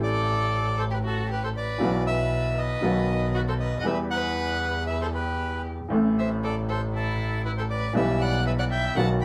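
From the first moment, a tango ensemble plays together in one room, with a tense, sultry mood and a rubato feel. The bandoneon carries the melody up front, its reedy, close-miked tone sounding dry and full. Beneath it, a violin plays a second line with vibrato, soft attacks and expressive portamento, while a brilliant, woody upright piano supplies the accompaniment. A single bowed double bass sits close and intimate, played sul tasto with an airy bow and light vibrato. The harmony moves from Am7 through Bsus4 and B to Em, then Am, and reaches Em/B at 8.0 seconds, all within a wet studio reverb. The passage is cut from a longer piece and breaks off at 9.2 seconds.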